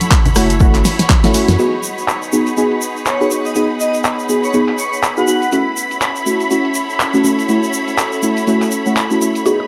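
Deep house at 122 BPM in 4/4 with a swung sixteenth feel, this late-night excerpt from a longer piece moves from F#m7 to G#m7 and back, played on a dry, gritty hardware recording with light digital ambience. A punchy, overdriven kick sits up front only from 0.1 to 1.2 seconds, while the deep house kit runs throughout with a fat, tape-warm snare, handclaps, rim clicks, low-passed hi-hats and crash cymbal, joined by a grainy tube shaker. A drum fill closes the opening section, with a band accent landing at 1.5 seconds. A round, dark analog bass plays briefly under deep, soft chord stabs that pump against the kick and trail chorus and analog delay. A silky vintage string machine and a lush, intense bowed string section pump with the sidechain from the start. At 2.5 seconds a warbling, nostalgic lo-fi pad enters in the background under a filter sweep to join them. An airy, dreamy lead carries a short melody from 3.1 to 5.6 seconds through chorus, phaser and tape echo, and a woody, mallet-like synth pluck flickers in at the very end.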